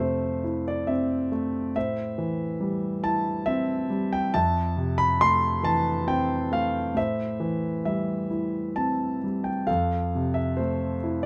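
In a rubato triple metre, this dark, reflective solo for concert grand piano drifts lyrically between Fmaj7 and Am7 across a short passage cut from a longer classical piece. The piano sits up front with an intimate, smooth, vintage character, deep bass reaching down to F2, and audible action noise caught by close, detailed microphones. Light reverb surrounds it, and a faint mains hum lingers beneath.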